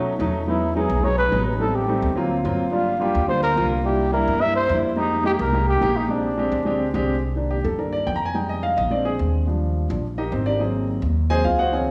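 A breathy, close-miked trumpet with a soft attack and whispered vibrato carries the melody from 0.5 to 6.9 seconds in this sophisticated, driving jazz excerpt at 214 BPM, over a growly, woody pizzicato upright bass and an intimate concert grand piano with audible action noise and deep bass, which takes a solo from 7.2 seconds as the harmony settles into C minor, all set in a recital-hall reverb.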